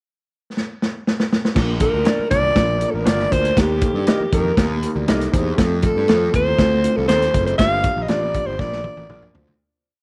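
A small, lightly reverberant room gives this short, joyful uptempo 1960s-style soul piece in Bb major at 119 BPM an intimate, danceable feel. Drums open with a fill at 0.6 s before a driving beat with the snare on all four beats, joined by mellow tine electric piano chords in eighths, a fuzzy, overdriven bass playing a syncopated line with muted ghost notes and chromatic approach notes, barely audible low-tuned congas, and a slightly broken-up lo-fi guitar chopping on the backbeat through spring reverb. Up front, a breathy, close-miked alto saxophone with vibrato spins a free, jazz-style melody over a Bb, Eb, F and Gm7 progression until a final drum fill and fade-out close the piece at 9.6 s.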